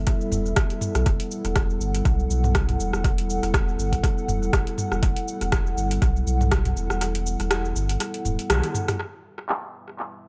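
An overdriven electronic kick sits up front in this hypnotic, spiritual afro house fragment, its deep, layered thump carrying a small-room character until it stops at 6.6 seconds. Around it, an afro-pop drum kit of cabasa, handclaps, rim click, toms, crash cymbal and metallic hi-hats moves with a 16th-note swing at 121 BPM in 4/4, its parts softened by low-pass filtering and trailed by tape echo. A round, sine-like sub bass holds the low end in E minor, pumping against the beat with a mellow, fast-attacking tone. Beneath everything sustains a dark analog pad of detuned square, sawtooth and triangle waves with a sub octave and wave-folding, its slow-blooming Em chords thickened by chorus and sidechain pumping. A drum fill and band accent arrive near 8.5 seconds, and a filter sweep on the pad marks a brief new section at 9.0 seconds within a lightly reverberant, echo-heavy mix.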